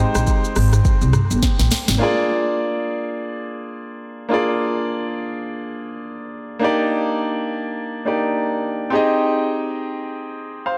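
Afrobeats with a romantic, joyful, swung feel opens with a brilliant, intimate grand piano with audible action noise and long sustain, alongside woody pizzicato upright bass and an electronic afro-pop kit of deep kick, sharp snare, crisp hats, rim clicks, shaker and toms. The kit ends its brief run with a fill from 1.4 to 2.0 seconds. After that, the piano carries the Abmaj7, Bb7 and Ebmaj7 chords alone until 10.8 seconds, all bathed in a dreamy, lush hall reverb.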